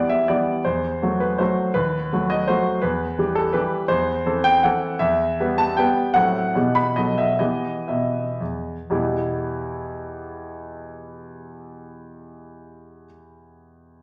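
Capricious and nostalgic, this short cut from a longer classical piece is a romantic triple-time dance in E minor, set in 3/4 with dotted rhythms and a free, rubato feel that moves between 111 and 175 BPM. A clear concert grand piano plays solo throughout, its sound natural and up front, with a deep bass reaching down to D#2 and lines rising as high as B5. The harmony circles around E minor, passing through B7 and A minor colours, with a diminished chord leading back toward the home key near 6.2 seconds. The playing slows between 5.6 and 8.9 seconds, easing out of the opening section before a contrasting passage begins at 8.9 seconds. A large, wet studio reverb with a 1.3-second decay surrounds the instrument, lending the dance a spacious, lingering halo.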